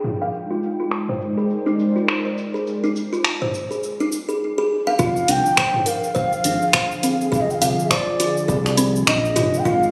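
A detuned, chorused analog pad with sidechain pumping holds an Abmaj9#11 chord beneath woody, thumb-plucked kalimba arpeggios that move through a filter sweep, low-pass filter and digital delay, while an overdriven deep house kit of cabasa, finger snaps, hi-hat and toms sits up front in this meditative, hypnotic organic downtempo piece at 103 BPM in F dorian, swung on the 16ths. At 5.0 seconds the harmony shifts to Fm6 as an airy bamboo bansuri takes the melody with vibrato and a breathy chiff, joined by a round, dark analog bass with sidechain pumping alongside an electronic kick carrying the same overdrive. Cut from a longer piece, the phone-recorded sound is soft-edged and compressed, set in a scoring-stage reverb of 2.0 seconds.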